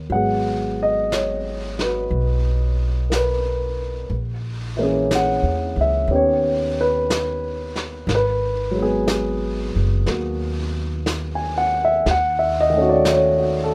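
A rough home-demo sound with light reverb frames this melancholic, wistful jazz ballad excerpt in a slow swing, where a dark, mellow baby grand piano sits up front comping through minor-seventh and half-diminished chords, a woody pizzicato upright bass anchors the low end, and a vintage brush kit with a rolled-off top whispers on brushed snare and hi-hat from 0.1 s.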